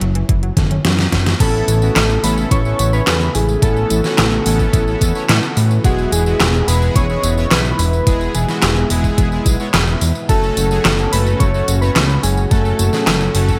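A moody, cinematic synthwave passage at 108 BPM opens with a mellow, round, octave-layered synth lead carrying the melody over a fat, sawtooth analog bass with sidechain pumping, an overdriven pop drum kit with a deep snare, handclaps, tambourine and gated reverb, and a nasal analog pluck arpeggio with phaser that stops at 1.3 seconds; a knocking electronic kick joins at 0.3 seconds, and a drum fill leads into the new section at 1.4 seconds, where a dreamy FM electric piano with a soft pad layer, an airy unison pad in the background and brassy analog synth stabs arrive over chords moving from Aadd9 to E and F#m, set in a bright 1980s-style digital production with light reverb.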